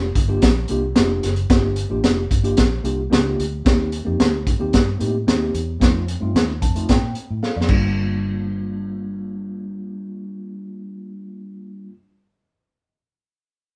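A straight, driving four-beat groove from a crunchy, saturated breakbeat kit, with its dark cymbals, high-tuned snare and tight kick sitting up front, powers this passionate, urgent stretch of uptempo 1960s-style soul cut from a longer piece, moving through Gm7, Eb6 and F7 before settling back on Gm7. Beneath it, a round, punchy, foam-muted fingered electric bass holds the low end, while a mellow, clean tine electric piano heard through its built-in speakers carries the accompaniment and plays a fill from 6.3 s as the drums launch into their own fill at 7.4 s. The drums stop at 7.8 s, leaving the piano and bass to carry on in a moderate stone room where the band plays live together.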